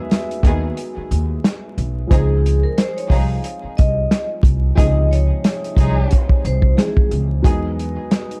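A dark, warm, vinyl-crackled boom-bap hip-hop excerpt at 90 BPM in Db major, where a muffled, up-front soul drum kit and a thumpy, woody upright bass carry a nostalgic, soulful groove under a worn, slightly detuned upright piano with cassette-tape colour, lush bowed string stabs with delay, and a ringing hard-mallet vibraphone melody that enters at 2.1 seconds as the chords move from Emaj9 to Dbmaj9.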